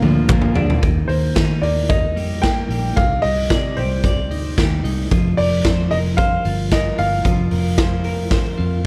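Gritty, saturated garage drums sit up front in a bright stone room and open with a fill over the first 0.8 seconds, where a full-bodied picked acoustic guitar with finger squeak plays only briefly, while a twangy, compressed twelve-string electric guitar spins arpeggios with slapback echo over a dark, round, foam-muted bass and an intimate, woody, slightly detuned upright piano carries the melody with its own slapback echo, giving this breezy, nostalgic jangly indie pop excerpt a close small-room feel.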